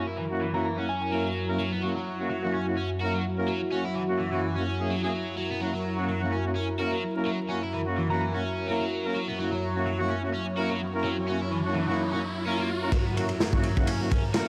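A lush, detuned unison pad holds sustained chords under a filter sweep while a crunchy, double-tracked overdriven guitar riff and clear, close-miked brass stabs play through hall reverb and vinyl crackle, with brief glassy FM bell phrases through a telephone-like tone and a background riser from 10.4 seconds building to 12.9 seconds, when a gritty, dark breakbeat kit of tight kick, snare and ride enters up front as guitar and brass take filter sweeps in this funky, raw breaks excerpt.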